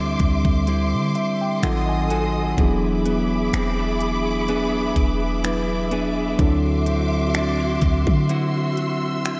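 A mellow tine electric piano accompanies this late-night contemporary R&B excerpt, its lush chorus coloring the chords and a fill between 0.7 and 2.6 seconds. At a slow 63 BPM in 4/4 with a light sixteenth-note swing, the mood is one of longing, moving from D9sus4 through D#dim7 and E7 to D9. A studio string section holds bowed chords with vibrato, portamento and a smooth top, pulsing under sidechain pumping, while a clean, picked electric guitar plays compressed arpeggios into a diffuse ambient delay. Beneath them, a deep, boomy 808-style bass with a sine tone and fast attack supports the harmony. An electronic trap kit arrives at 0.2 seconds with a knocking kick, crisp hi-hats and finger snaps. A lush hall reverb soaks the whole mix in a dreamy haze.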